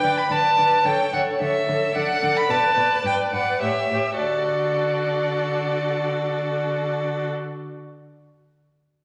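Heard in a reverberant recital hall, this short cut from a quick, spirited and cheerful classical-period string quartet movement in 2/4 puts a clear, smooth first violin up front on the melody, with a rich second violin on the second line, a focused viola accompaniment and an expressive cello bass with portamento, all bowed with vibrato, as the pace slows between 1.4 and 4.2 seconds before a new section begins.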